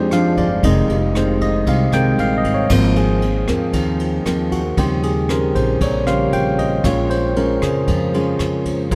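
A barky tine electric piano opens this short bossa nova excerpt at once, taking the solo over a thumb-plucked nylon-string guitar and a pizzicato upright bass, with a jazz brush drum kit joining at 0.1 seconds. The mood is intimate and melancholic, moving at a straight 116 BPM in 4/4 in Ab major. The electric piano sounds clean and up front through a combo amp, while the classical guitar has a warm tone and the steel-strung bass is woody and growly in its low register. The brushed kit is airy and polished, with dark cymbals, a boomy kick, ride, crash and rim clicks sitting back in the blend. A huge ambient reverb places the piece in a vast, echoing space. The harmony moves from a rootless Bb7 and Fm7 to Ab69 at 2.7 seconds, then on through Eb13 and Bbm7.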